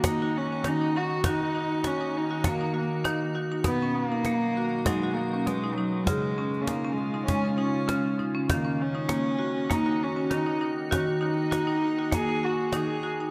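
Hard-mallet marimba arpeggios with a woody, percussive snap, a bowed cello melody with a nasal gut-string tone and light vibrato, a snappy, close and dry cajon, and an icy, crystalline glass pad holding slow-attack chords all sound together from the start of this hypnotic, meditative world piece in Eb minor at 99 BPM, with a gentle sixteenth-note swing. The chords move from Ebm to B, Db and back to Ebm at 8.5 seconds, while tape echo trails the marimba and cello and chorus shimmers on the pad. A wet scoring-stage reverb surrounds the ensemble until the cajon drops out at 12.9 seconds and the cello at 13.0, in this short cut from a longer piece.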